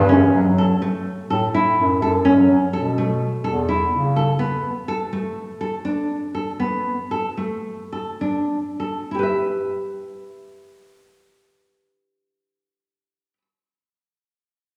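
A wet recital-hall reverb surrounds this short contemporary instrumental fragment, cut from a longer piece, giving it a hypnotic yet restless air in a straight 9/8 metre. A nylon-string guitar sits up front with a full-bodied, deep classical tone, fingerpicking arpeggios from 0.1 s until 13.4 s. Beneath it, a bass clarinet carries the low line in a distant, roomy classical style, playing only through the opening seconds before dropping out at 4.3 s. The harmony moves from F#m7 to Bm7, and the pulse slows between 4.9 and 9.1 s before the music settles onto an E minor chord in a new section. The guitar's arpeggios carry on alone into that closing passage, ringing out into the hall's long tail.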